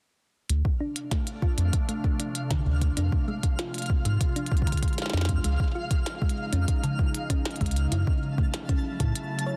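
A warm, round sub bass sits up front in this short IDM excerpt, holding deep sustained sine tones from 0.5 seconds under an intricate, eerie mood at 97 BPM in a straight 4/4. An overdriven electronic kick, soft but close, joins at 0.7 seconds. A glitchy kit adds a tiny snare and clicky hats run through overdrive and digital delay, both drum parts carrying the boxy colour of a small room. A tine-like, thumb-piano-style synth pluck spins chorused arpeggios through tape echo while a filter sweep moves across it, and a glassy FM pad with ensemble chorus and reverb holds ethereal chords from 1.0 seconds. High above, a sparkling granular texture adds an octave-up shimmer with reverb and sidechain pumping. The harmony shifts from Dm7 to Fm, C#add9 and F#m7 within a dense, heavily limited digital master.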